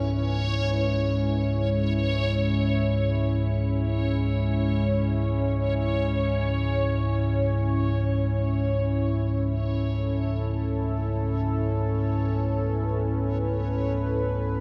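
Vast and ominous, this dark ambient drone is cut from a longer piece and sits in a cavernous cathedral reverb. A deep, rumbling drone with a nasal, ring-modulated edge and a moody, full-bodied analog pad with chorus and a sub octave sit up front throughout, while a reversed, granular swelling texture adds a bright, dreamy shimmer above them. The harmony moves from C#m to Aadd9 at 9.6 seconds.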